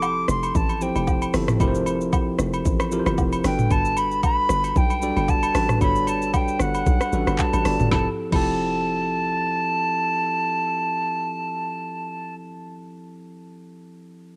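Relaxed and warm, this amapiano excerpt moves at 114 BPM in 4/4 with a 16th-note swing, sitting in F major and shifting from Fmaj9 to Gmaj9 at 3.4 seconds before returning to Fmaj9 at 7.9 seconds. A reedy, airy silver concert flute carries the melody up front in a straight, tongued tone with rolled-off highs, colored by cassette tape and analog delay. Beneath it, a bright, bell-like tine electric piano plays clean accompaniment through built-in speakers and is the last part heard, stopping at 14.4 seconds. A hollow log drum bass gives a bouncy, percussive low end with a fast attack and mellow decay. The electronic R&B kit, with its knocking kick, woody snare and warm hats, plays alongside close, dry agogo bells and woodblock from the start until both stop at 8.5 seconds. The whole mix has the light reverb and homespun character of a cassette recording.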